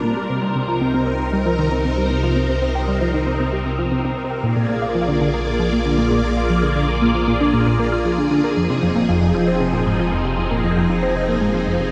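Drenched in a huge, wet reverb, this fragment of ambient, sequencer-driven space music feels expansive and hypnotic, as a swirling, vintage string machine with ensemble chorus and phaser holds bright, up-front sustained chords through Cm7, Bb7 and Fm7, a tight, driving, wave-folded sequenced synth with chorus, phaser and tape echo plays its riff, and a round, deep, nasal analog bass sits underneath for the full 11.9 seconds.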